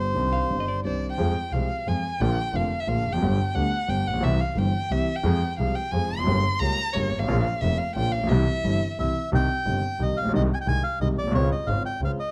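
A reedy, dark bandoneon opens this melancholic, passionate tango fragment over an up-front warm grand piano and a clear, bowed double bass with light vibrato, while a clean, picked hollow-body electric jazz guitar adds a brief second line before a close, expressive bowed violin, singing with vibrato and portamento, takes the solo from 1.2 s, and the bandoneon returns at 9.0 s as the key turns from F harmonic minor to C harmonic minor, the music moving in a rubato 3/4 at 177 BPM, tuned to A4 = 436 Hz, with light reverb and detailed close miking.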